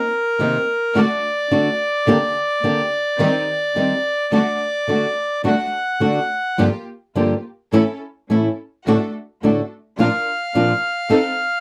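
Tango in a passionate, dramatic rubato 4/4, cut from a longer piece, where a reedy, airy bandoneon carries the melody up front, pausing at 6.6 seconds and returning at 10.0, over fingerpicked acoustic flamenco guitar and distant, lush bowed string stabs with vibrato, captured in a dry, close 1970s-style studio sound.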